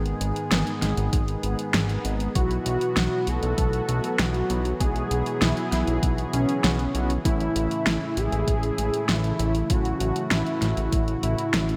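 Bright, 1980s-style digital production sits in a lush hall reverb on this cinematic, moody synthwave excerpt, cut from a longer piece and moving in a straight 4/4. A smooth, detuned sawtooth pad holds sustained chords with chorus and sidechain pumping, while a dark, brassy synth section with ring modulation and filter sweeps places round stabs in the background through a digital delay. Up front, a fat, thick analog bass with a filter pluck anchors the low end, joined by a layered pop kit with a fat snare and warm hats, overdriven and re-recorded in a small room. A knocking electronic kick enters at 1.1 seconds and drops out at 11.5 seconds. From 2.4 seconds a bold unison lead carries the melody, its detuned sawtooth and triangle layers, sub octave and vibrato giving it a mellow weight under digital delay, as the harmony moves from G#m to Bsus4 and then A.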